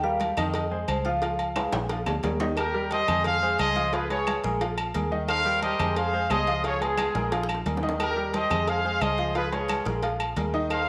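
A brisk, straight 4/4 salsa groove at 177 BPM drives this festive, danceable passage in Eb major. Congas with a thick-skinned, vintage tone sit in the background alongside tight, high-tuned cowbell and bongos and woody claves, while ringing agogo bells and metal-shelled timbales fill out the percussion, with drum fills punctuating the groove. A round, foam-muted fingered electric bass anchors the low end, and a clear, present grand piano carries the accompaniment through a repeating cycle of Eb6, Fm7, Db7 and Bb chords. A mellow vibraphone with soft mallets and slow motor vibrato opens the melody, stopping at 1.7 seconds, before a tight, up-front trumpet section with light vibrato takes over in pop style at 2.6 seconds. The whole is bathed in a wet echo chamber reverb.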